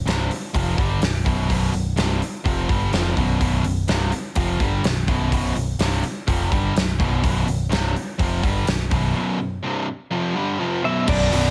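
A straight 4/4 pulse at 125 BPM drives this menacing hard rock cut in B phrygian over a Bm chord, with a big-room drum kit, fat snare and punchy kick sitting up front beside a growly picked electric bass. A bright, up-front distorted electric guitar and a warm, hollow-body semi-hollow guitar with overdrive carry the riff under light reverb. At 10.8 seconds a dark, slightly broken-up lead guitar with slapback echo adds a brief melody, and at 11.1 seconds a very quiet, double-tracked, scooped high-gain guitar joins the riff.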